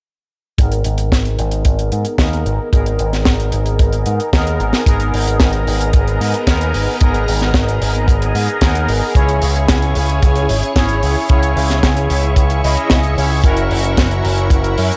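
A bright, up-front picked electric bass with an envelope filter drives this bittersweet, nostalgic italo disco cut in G# minor at 112 BPM, alongside fat, detuned analog synth brass stabs with chorus and analog delay that open with a filter sweep, a dry, tight kick, and a funk kit with hi-hat and high-tuned snare that plays a fill at 4.3 seconds before a swirling, phased string machine enters with slow-attack sustained chords at 5.2 seconds, all set in a gritty small-room hardware sound.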